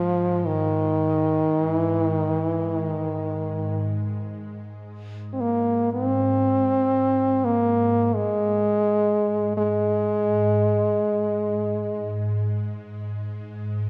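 Peaceful and calm, this free-time world meditation excerpt sets a clear, up-front French horn melody with vibrato and a smooth top, played in a classical solo style and touched with delay, over a sustained drone from an ethereal, airy pad with detuned ensemble chorus and a slow attack. The horn sings from the start until 12.2 seconds, while the pad's long release carries on to 13.9 seconds. A wet concert hall reverb surrounds both, lending a spacious, floating stillness.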